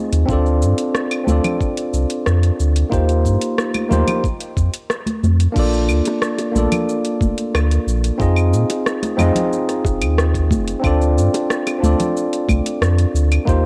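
Relaxed and smooth, this sunset chillout excerpt in Bb major moves at 91 BPM in a straight 4/4, with a clean tine electric piano played through a combo amp and an analog delay, and a deep, round sine sub bass both sitting up front, while a produced electronic R&B kit of metallic hi-hats, rim clicks, claves, shaker and crash cymbal pairs with a gritty, thumpy compressed electronic kick under studio reverb and cassette-tape grain, bright close congas and bongos enter at 1.3 s, and the Dm7 to Eb69 opening gives way at 5.6 s to a Bbmaj7, Fm7 and Dm7 passage, all within a light-reverb home cassette sound.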